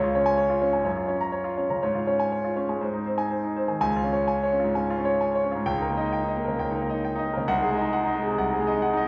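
A wet recital-hall reverb, with a decay of about 1.4 seconds, surrounds this short passage cut from a longer classical piece, recorded in a church or concert hall. It is a virtuoso piano study in Db major, with a sparkling, heroic mood, a rubato feel in 4/4, and a tempo that moves between 118 and 137 BPM. A bright concert grand piano plays alone throughout the 9.1 seconds, sitting up front with a brilliant, polished tone, deep bass and a short sustain across its span from C2 to Bb5. The harmony opens on Db, passes through Gbmaj7 and Db/Ab to Ab, then returns to Db at 3.8 seconds as the opening phrase begins again. That repeat leans toward Eb7/Db and closes on Ab7/C, so the passage ends on an open, unresolved chord.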